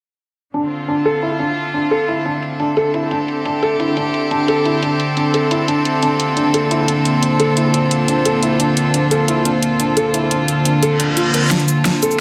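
Dark technical drum and bass at 175 BPM in D minor, this futuristic excerpt sets felt-muted upright piano arpeggios, soft and intimate through tape echo, against a deep sawtooth ambient pad that enters at 1.7 s under a filter sweep, a nasal, earthy chamber string section and a dubstep kit with a huge snare and bright hats, with the pad, piano and strings pumping under a moderate plate reverb over Dm and Bbsus2/D chords, before a reverse cymbal and riser arrive at 10.9 s and a drum fill brings in a barely audible overdriven electronic kick at 11.5 s.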